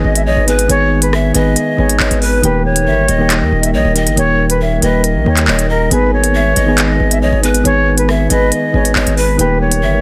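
A distorted, saturated 808-style bass sits up front in this tense, dark drill excerpt at 138 BPM in half-time, its heavy, fast-attack notes decaying beneath an electronic kit of crisp hi-hats, handclaps and rim clicks that plays from 0.2 to 9.8 seconds. Over a G# harmonic minor progression moving between G#m and D#, a distant, airy concert flute carries the melody through a low-pass filter and tape echo, while breathy cane pan pipes with a chiffing attack add a second line with their own tape echo. Soft, round electric-piano-like synth keys warble through chorus and a low-pass filter, and a very quiet glass harmonica holds ethereal, beating chords in a small room, with the mix pressed into a dense, heavily limited master.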